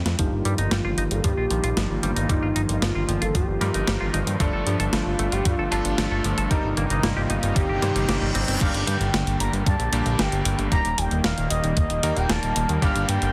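This excerpt has a dense, heavily limited modern sound with light reverb. It is a driving, moody synthwave piece at 114 BPM in a straight 4/4. A thumpy, sampler-style electronic kick and a clean 12-bit drum machine with a medium-tuned snare, hi-hat and crash cymbal sit in a studio ambience. Alongside them, a fat, detuned sawtooth bass plays up front. Behind these, a smooth, warbling analog pad holds sustained chords with chorus, vintage 12-bit sampler grit and sidechain pumping, moving from Ebadd9/G through Dm/G and Cm7/G. A bright, clangy electric grand piano adds stabs in the background under a filter sweep. A semi-hollow electric guitar plays clean, compressed arpeggios through digital delay until 8.6 seconds. Above it all, an expressive, mellow synth lead carries the melody with vibrato, lush chorus and digital delay. A very quiet riser and reverse cymbal lead into the shift at 8.6 seconds, where the harmony turns to Gm and Eb.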